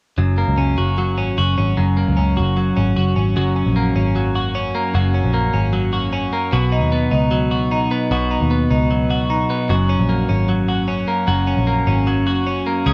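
A straight 4/4 pulse at 152 BPM drives this breezy, bright indie pop excerpt in F# major, where a clean, twangy, up-front twelve-string electric guitar plays compressed arpeggios over a round, foam-muted vintage picked electric bass, both playing from 0.2 to 12.9 s through light reverb and a worn, warbling cassette-tape pitch drift as the harmony moves from F# to B at 6.5 s and back to F# at 9.7 s.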